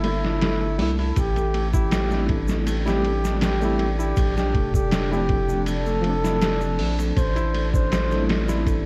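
A worn, warbling cassette haze colours this dark, cinematic trip hop excerpt at 80 BPM in A phrygian, where a veiled bucket-muted trumpet with tape echo sings the melody over a reedy electric piano's fast tremolo, a felt-muted upright piano's intimate arpeggios through digital delay, a deep chorused ambient pad, a round analog bass, a compressed, pitched-down sampler-style drum kit with a thumpy kick, and an egg shaker entering in the background at 1.2 seconds, as the chords move from C7 through Am7 and Bbmaj9 to a rootless Fmaj7/A.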